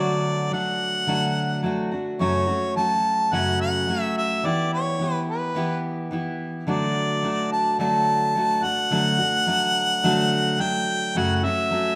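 Folk instrumental with a hopeful, warm mood, heard as a short excerpt from a longer piece in a straight, steady four. A clear harmonica carries the melody throughout, played in a classical style with light vibrato and a smooth top end, sitting up front as the solo voice. Beneath it, a picked steel-string jumbo acoustic guitar provides the accompaniment across its whole span, its old strings giving a woody, full-bodied tone that also sits close to the listener. The harmony moves from D to F#m and Em before returning to D, then touches F#m again at 11.2 seconds. A moderate scoring-stage reverb surrounds the pair with a two-second tail.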